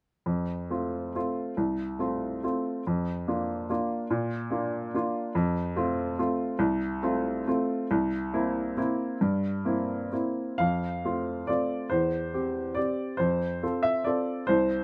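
A close, detailed recording of a clear upright piano, woody and natural in tone, sits up front in light reverb. This sparkling, graceful classical waltz in F major moves in 3/4 with a rubato feel between 118 and 152 BPM, the solo piano spanning C2 to F5 through chords of F, Bb/F and C7. At 10.6 seconds a second section begins, passing through C/E before settling back on F in this passage cut from a longer piece.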